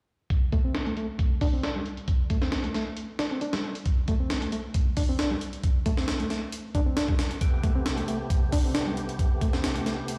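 Breakbeat with a swaggering, energetic push, this short cut from a longer piece runs at 135 BPM in a straight 4/4, sitting in A minor over an Am9 chord. A sampler-style breakbeat drum kit sits up front, compressed and gritty, with a thumpy kick and a high-tuned snare that sound re-recorded in a small room, all dulled by low-pass filtering. From 0.5 seconds a reedy electric piano plays a riff between G3 and D4, its fast tremolo, tube saturation and 12-bit sampler grit heard through built-in speakers and trailed by dub echo while a filter sweep moves across it. At 7.4 seconds a percussive tonewheel organ arrives with sustained chords from C3 to G4, lightly overdriven, its third harmonic percussion, chorus vibrato, stopped rotary speaker and sidechain pumping giving it a full body. The mix carries light digital ambience and a large studio reverb, as if played on a big sound system in a bare room.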